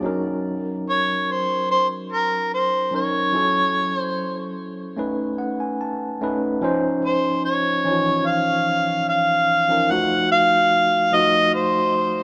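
Smooth and romantic, this soul excerpt sets a clean tine electric piano, up front through its built-in speakers and adding a fill at 5.0 s, beneath a mellow, jazz-style harmonica solo that enters at 0.9 s with light vibrato, soft attacks, scooped notes and a vintage tape echo, the pair sitting in a lush hall reverb within a rough home demo mix.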